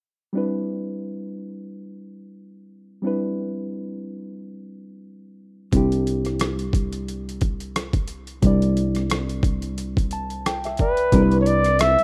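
A reedy, worn electric piano, slightly out of tune and heard as if through built-in speakers, opens this smooth, relaxed neo-soul R&B excerpt at 89 BPM with a 16th-note swing, holding a Cmaj9 chord and playing a fill from 9.8 seconds. At 5.7 seconds a gritty, pitched-down, overdriven boom bap sampler-style drum kit with a thumpy kick, hi-hat and rim click arrives alongside a growly fretless electric bass sustaining a low C through analog chorus. A flugelhorn with light vibrato and scooped, jazz-style notes takes the solo melody at 10.8 seconds, all in a rough home-demo mix with digital ambience.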